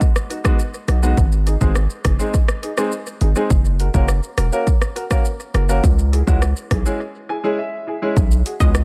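Set in a digital, echo-heavy space, this tough, hypnotic dancehall excerpt rides on an up-front, punchy electronic drum kit of kick, rim click, shaker and warm hats, with a heavy, hard-hitting 808-style bass of sine tone and noise layer sitting just as close. A clear grand piano carries the chords through analog delay and takes a fill during a break from 7.0 seconds. At 8.6 seconds a round, bright, detuned sawtooth pluck with chorus and a filter sweep sounds a single brief note.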